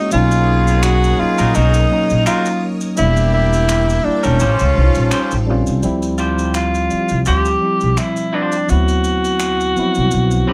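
A breathy, whispered tenor saxophone with slapback echo carries the melody over phaser-tinged tine electric piano and shimmering string-machine violins that stop at 5.8 s, while roomy horn stabs, a woody, up-front pizzicato upright bass, distant maracas and finger snaps, and a twangy, slightly broken-up electric guitar entering at 1.4 s fill out this introspective, late-night neo-soul R&B excerpt with a light swing.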